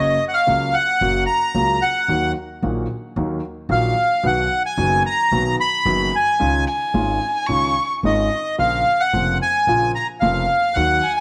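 A reedy, airy bandoneon leads this playful, elegant tango, sitting up front with a bright melody in the upper register. Underneath, a mellow, dark grand piano with short sustain supplies the accompaniment, while a plucked upright bass on gut strings adds a woody, thumpy low end. The tempo is 111 BPM in 4/4, but the feel is rubato, tuned slightly high to A4 = 441 Hz, moving through F#, D#m, B, C#add9 and A#m. At 6.7 seconds a single bowed violin enters up front as a second line, its warm tone carrying vibrato, portamento and a smooth top. A moderate echo chamber reverb with a 2.0 second decay lends the short passage, cut from a longer piece, a sense of space.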